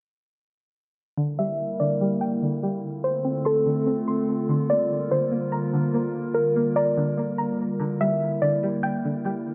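Set in 4/4 at 145 BPM with a half-time feel, this hazy, spacious hip hop excerpt drifts along in a dark production washed in a lush hall reverb. A string-like resonator pluck enters first at 1.2 seconds, spinning twangy, bright arpeggios with a noise layer, a moving notch and a filter sweep that runs to the close, trailed by digital delay and chorus. A soft, round pluck carries a gentle melody in a narrow upper range, its decaying notes dark and echoed by delay. Beneath them, a warbly tape-like pad holds sustained chords with a slow attack and long release, sounding nostalgic, lo-fi and mellow through chorus and its own reverb. The harmony moves from Em7b5/D to Dm7 and Gm7/D before returning to Em7b5/D, all three parts sitting up front until the fragment closes around 9.5 seconds.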